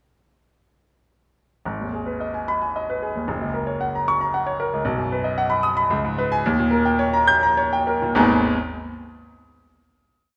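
A classical virtuoso piano study in 3/4 with a rubato, agitated and passionate feel, where a clear, smooth grand piano with a vintage character and short sustain plays alone and up front in sweeping arpeggios from 1.7 to 8.6 seconds, moving through G# minor, F#, B, C#5 and D#7 before settling on a final G# minor chord at 8.1 seconds inside the wet reverb of a scoring stage.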